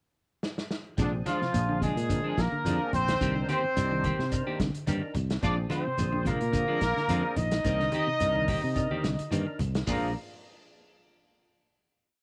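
A lightly swung, joyful, funky afrobeat groove in 4/4 opens with a fill on a punchy vintage drum kit at 0.4 seconds, then settles in from 1.0 seconds as a tight, up-front horn section plays octave-doubled call phrases over a round, syncopated fingered bass riff, a slightly broken-up guitar ostinato, clean funk strumming from a hollow-body guitar, rootless stabs from a fat, key-clicking tonewheel organ with overdrive, chorus vibrato and slow rotary speaker, and grainy shekere in the background, joined at 1.3 seconds by low-tuned congas, also in the background, before ringing out on a final chord at 9.9 seconds.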